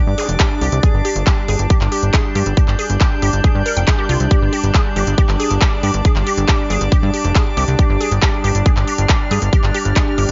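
A straight 4/4 psychedelic trance groove at 138 BPM drives this alien, psychedelic excerpt, built on a punchy, tape-warm electronic kick up front and a small-room techno kit with smooth hi-hats and handclaps, beneath a funky ring-modulated analog bass, a woody wave-folded pluck riff carrying chorus and delay, a resonant overtone-sweeping drone holding a G5 chord with phaser and sidechain pumping, and a floating, pure bowed string section, all set in light reverb with a dark top end.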